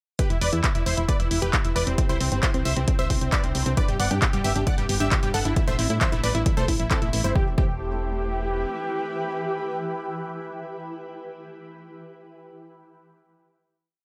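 Emotional and euphoric, this short uplifting trance piece in E minor drives at 134 BPM, opening straight into a drop where a four-on-the-floor electronic kick and dry analog drum-machine claps and hats lock in, the hats pumping under sidechain along with a round, dark FM bass rolling in sixteenths with tube saturation. Up front, a detuned supersaw stab repeats a riff in thirds and sixths over a pedal note through digital delay, while a granular, ethereal pad with octave-up shimmer, phaser, chorus and 12-bit sampler grit sustains the Em–Cadd9–G–Am chords beneath it. A lush, wave-folded unison pluck adds an eight-step arpeggio in the background from 3.8 s, and the drop gives way at 7.4 s to a final E minor chord in light reverb.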